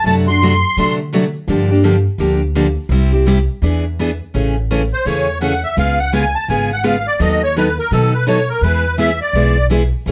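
A reedy, shimmering musette accordion sits close and up front in this lively, charming excerpt of acoustic string swing at 168 BPM, taking the melody briefly at the start and then soloing from 4.9 s once the tune settles into A major, over bright picked steel-string guitar accompaniment and a woody, thumpy pizzicato upright bass, all in a moderate studio room.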